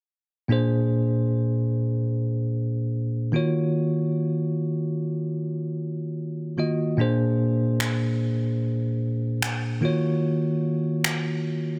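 A bell-like, bright electric piano plays sensual, longing chords from 0.5 seconds in this slow contemporary R&B excerpt at 74 BPM in Eb dorian, moving between Bb9 and Ebm9, while electronic finger snaps with a softly clipped, small-room snare sit up front from 7.8 to 11.2 seconds in a dry, dense, heavily limited modern mix.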